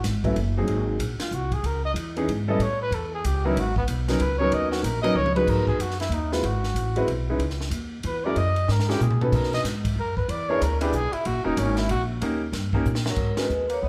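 A mellow trumpet solo opens this moody, late-night jazz excerpt at once, carried by woody, thumpy pizzicato upright bass and a compact cocktail drum kit in a small-group swing and bop style. The tune moves at a brisk 187 BPM in 3/4 with a swung eighth-note feel, centred in G# minor. The trumpet sits up front with a present, vibrato-touched jazz tone, while the steel-strung bass is also forward in the mix. The dry drums bring dark cymbals, a high-tuned snare and a punchy kick, with fills around 5.2 seconds, again near 8.7 seconds and once more near the close. A clear, natural baby grand piano comps chords through changes such as C#m7, G#m11, F#add9 and D#7. As the solo ends, a band accent lands at 13.3 seconds and a vibraphone with medium mallets, motor off, takes the melody in its final moments with a metallic, ringing sound bathed in plate reverb, all heard from further back in a large studio space.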